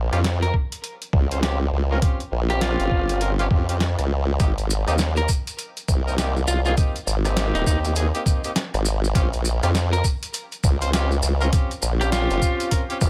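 Set in a digital ambience, this gritty, funky glitch hop cut has a swung groove built on a thumpy, pitched-down electronic kick sitting up front and a tape-warm, sampler-style boom bap kit of hi-hat, rim click and medium-tuned snare. A saturated formant-sweep wobble bass, sawtooth and sine with chorus and tube saturation, wobbles up front beneath punchy horn stabs with light vibrato, sidechain pumping and tape echo. A slightly broken-up, picked lead guitar carries the melody through tape echo, while grainy, vintage maracas join at 4.4 s as the chords move from Bbm69 to Abmaj7 and back at 9.2 s.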